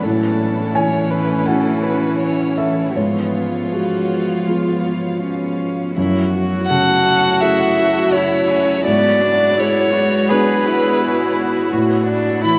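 A felt-muted upright piano, solo violin, viola and cello, and a chamber string section sound together from the first moment of this melancholic, reflective neoclassical piece. It is cut from a longer work and moves with a rubato feel in 4/4. Up front, the violin carries the melody with a dark, woody tone, played sul tasto with vibrato and touched by a slapback echo. Beneath it, the cello adds a rich, floating second line. The viola's pure, soft-attacked sound and the piano's mellow, thickly felted tone, with its action noise audible, fill in the accompaniment, while farther back the chamber string section holds sustained chords with light vibrato. The ensemble sits in a huge, wet ambient reverb with a 7.3-second decay that evokes a vast, echoing space, and the opening section repeats at 6.0 seconds.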